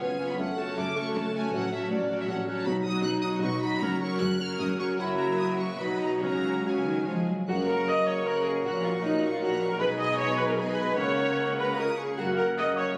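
Heard through a phone in the room, this short cut from a longer classical-period movement sits in a wet, spacious reverb, giving the symphony orchestra a distant, hall-like glow. In a spirited, lively 3/4 at 140-161 BPM with a rubato feel, a rich, focused violin section carries the melody in F# major, while a clear second violin section and a clear, vintage-toned clarinet trace second lines beneath it. The viola section supplies smooth, even accompaniment alongside a mellow, roomy bassoon, and the cellos add a lush, close bass underpinned by an intense, light-vibrato double bass section. At 7.5 s the second section opens with fresh colour: a pure, expressive flute and a mellow cor anglais join the second lines, and a mellow French horn section enters with sustained chords in the background. The harmony moves from F# minor through B and C# suspensions before settling firmly on F# major, closing on that chord at 12.2 s.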